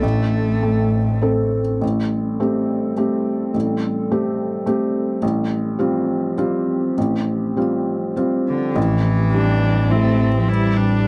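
A soft, intimate felt-muted upright piano with audible action noise opens this melancholic, reflective neoclassical piece in A minor, sounding from the first moment alongside a brief passage from an expressive bowed cello with vibrato and portamento and an up-front double bass with tube saturation, all over a warbling, detuned tape-like pad sitting dark in the background. In rubato 3/4 at about 99-108 BPM, the harmony moves through Am7 and Fadd9/A as the piano and pad carry on together, until the cello returns at 8.5 seconds, the bass at 8.8 seconds, and a single focused, smooth-topped viola joins at 9.3 seconds. The dry, gritty recording has light reverb and a dulled top end.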